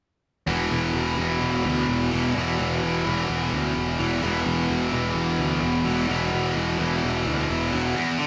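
Captured as a band playing live in a large studio with moderate reverb, this dark, relentless metal fragment at 128 BPM in 4/4 sets a bright, overdriven electric guitar and a scooped, high-gain distorted guitar up front, both riffing on E5 from 0.5 seconds, while a growly, fuzz-laden picked bass, direct and amped, drives alongside them, also up front, until 7.9 seconds.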